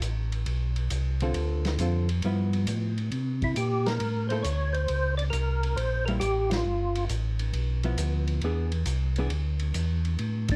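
A mellow, round tonewheel organ bass line and a muffled, lo-fi vintage drum kit with dark cymbals and a tight kick open this swinging, soulful soul jazz organ trio excerpt in G mixolydian at 136 BPM, the organ bass sitting up front with chorus vibrato and a slow rotary speaker. A dark, compressed hollow-body jazz guitar enters at 1.2 seconds with picked accompaniment, and at 3.4 seconds a fat, percussive second organ takes the melody with key click, third harmonic percussion and its own slow rotary. Light reverb surrounds the band, which hits an accent at 6.4 seconds over chords moving from Gadd9 through G13 and C#dim7 to E7.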